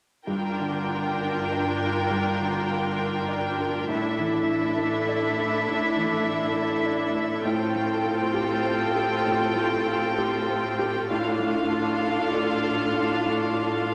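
Cinematic, emotional film score at a rubato 66 BPM, longing and sorrowful, in which a felt-muted upright piano with a soft, intimate, thin felt tone plays accompaniment alongside a bowed, lush viola section, while a clear violin section with vibrato and a smooth top carries a second line up front above a focused cello bass, all moving through Gm7, Asus4, Fadd9/A and Dm/A in the wet reverb of a scoring stage, in an excerpt from a longer piece.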